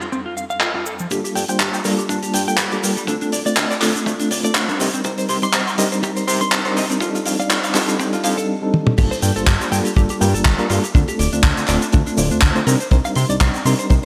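A tight, dry kick drives this sleek, groovy nu-disco excerpt in G minor at 122 BPM with a light swing, arriving at 1.1 seconds with a fat, detuned sawtooth analog bass that pumps in the mix, over a reedy electric piano with fast tremolo and delay whose filter sweep carries the build-up, a clean, picked electric guitar riff with lush chorus, a brief close cabasa at the start, and a damped, up-front 70s drum kit with handclaps, hi-hat, shaker, toms and crash whose fill at 8.7 seconds tips into the drop at 9.0 seconds, all set in a moderate hall reverb with bright 1980s-style digital production.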